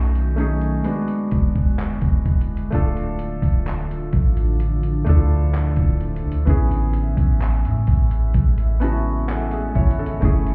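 Muffled as if heard through a wall, with a club reverb and a dull top end, this excerpt of romantic, dreamy contemporary R&B drifts at 64 BPM in A major, moving from B7 and E7 to Dm and then Amaj7. A gritty, compressed sampler-style drum kit with a thumpy kick, handclaps and hi-hat sits beside a deep, round, up-front 808-style bass. Meanwhile, an intimate felt-muted upright piano with audible action noise plays mellow accompaniment and a fill from 8.3 to 10.2 seconds, over a moody, detuned ambient pad with chorus sustaining chords in the background.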